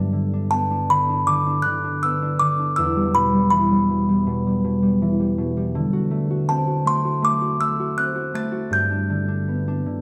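A dark production bathed in moderate recital-hall reverb frames this tender, innocent children's lullaby in G major, a short excerpt at 81 BPM in 4/4 with a rubato feel, where an up-front acoustic concert harp plays warm, ringing, thumb-plucked accompaniment from 0.0 s, and a delicate, tinkling music box with a small, boxy character, also up front, enters at 0.5 s to carry the high melody over a G, Em, D7 and back to G progression.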